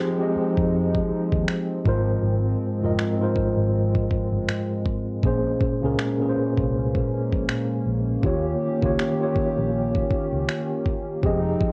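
A mellow, clean tine electric piano sits up front with plate reverb and cassette-tape haze, beside a hollow, flute-like pad that is soft and detuned with chorus, opening this dreamy, romantic contemporary R&B fragment over Fm7, Ab6, Bbm7 and Eb7 chords; a dark, round, foam-muted electric bass joins at 0.4 s, and a dusty, gritty sampler-style kit of finger snaps and a thumpy kick enters up front at 0.6 s, adding a swung sixteenth-note feel to this home cassette recording in a moderate studio room.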